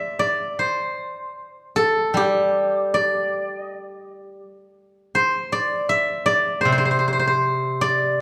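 In a free, rubato flow, this flowing, pastoral fragment of Chinese traditional solo music features a steel-string zither played with fingerpicks, its silvery, ringing tone sitting up front in a moderate recital-hall reverb across a brief 8.2-second passage cut from a longer piece.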